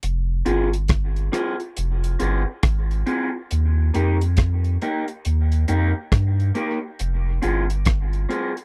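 A round, sine-like sub bass sits up front and anchors this short dub reggae cut, its fast attack giving way to deep, sustained notes under a meditative, deep mood. A damped 1970s-style acoustic drum kit shares the foreground, with a tight kick, hi-hat and rim clicks carrying a swung sixteenth-note feel. From 0.5 s an electric guitar played through a small old amp adds picked accompaniment, its dark, slightly broken-up, lo-fi tone colored by phaser and dub echo. The harmony moves from F minor to E-flat at 3.5 s and returns to F minor at 7.0 s. The sound is dry and close, like a 1970s studio session with little reverb, and the passage is lifted from a longer piece.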